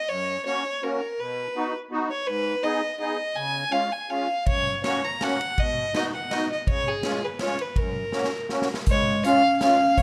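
A 3/4 piece at 164 BPM with a rubato feel opens this jolly, festive alpine folk dance in F# major, cut from a longer piece, as a rich, smooth fiddle with light vibrato and analog delay carries the bowed melody up front over a reedy, shimmering musette accordion with a vintage, band-limited tone. An acoustic street-band drum kit joins at 4.5 seconds with a boomy kick, medium-tuned snare, dark cymbals and an airy big-room sound, and plays a fill at 8.1 seconds. At 8.9 seconds a classical-style solo clarinet adds a second line as the harmony moves to Db, all in a dark, lightly reverberant production.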